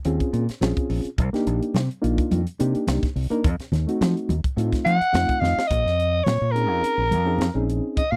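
Driving and slick, this short electric jazz fusion excerpt at 106 BPM sets a crisp, punchy drum kit, a fingered electric bass up front, softly damped congas in the background and a reedy, mellow electric piano with fast tremolo under Bbm9, Cm9 and F7b9 chords. A growling, raspy soprano saxophone enters at 4.8 seconds with a smooth top and light vibrato during the piano's fill, and a drum fill then leads into the next section, all over a dry, close 1970s-style studio sound.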